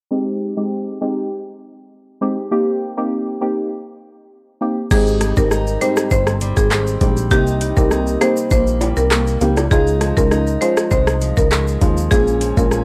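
A dry, gritty cassette-tape sound with digital ambience frames this tough, sultry dancehall excerpt at 100 BPM in a straight 4/4, cut from a longer piece, opening with a deep, dark chord stab under a filter sweep that moves through Abmaj7 and Cm7 alone until 4.9 seconds. There the full band enters: an up-front, overdriven island pop kit with a knocking kick, metallic hats, handclaps, rim clicks and shaker, a punchy, funky analog bass with a plucky filter, and a fingerpicked parlour steel-string guitar whose fresh strings squeak under its arpeggios. A woody marimba struck with hard mallets carries the melody through an analog delay, while bright egg shaker and timbales sit in the background as the chords move on to Dbadd9 and Bbm7.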